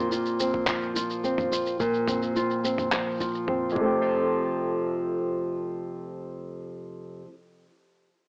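A straight four-beat pulse runs through the opening of this short folktronica excerpt, carried by an up-front lo-fi sampler-style kit of handclaps, shaker and toms, muffled and overdriven, with a thumpy, pitched-down electronic kick sitting in the background from 0.5 seconds until both drop away near 3.9 seconds. Over this, a fingerpicked flamenco guitar plays arpeggios with audible finger squeak, its acoustic tone roughened by 12-bit sampler grit, dulled by a low-pass filter and trailed by digital delay, moving from Bbsus2 to Fadd9 and carrying on by itself to the end. The mood is hopeful and pastoral, heard through moderate reverb with a small-speaker character.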